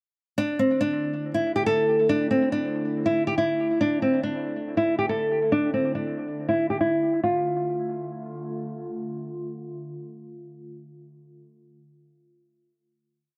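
Hip hop trap piece, menacing and hard-hitting in a half-time feel, where a small, fingerpicked nylon-string guitar sits up front with a looping melody repeated like a sample and washed in dub echo until 8.5 seconds, over a dark, warbling, detuned tape-like pad with chorus that sustains chords from Dsus2 to a final D minor until 11.4 seconds, all in an echo-heavy, low-pass-filtered mix with a wet spring reverb.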